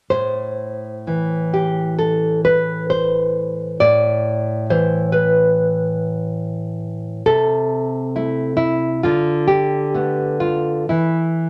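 Wistful and intimate, this romantic solo classical guitar passage cut from a longer piece drifts with rubato in 4/4, its dark, fingerpicked nylon strings sitting up front with audible finger squeak in a moderate studio reverb, moving from Am through Am/C at 7.3 seconds to Dmadd11 at 9.0 seconds before the guitar falls away at 11.5 seconds.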